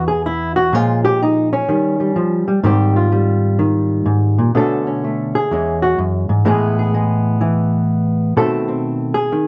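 Warm and relaxed, this short solo jazz excerpt swings gently in four, carried entirely by a clean, dark hollow-body electric guitar played with the fingers and sitting up front in the mix. Its compressed tone moves through a rich chain of extended chords, from an opening E through minor sevenths, ninths and a major seventh to a suspended Asus2, before closing on a tense B7b9 at 8.4 seconds. A light reverb adds a touch of space around the guitar.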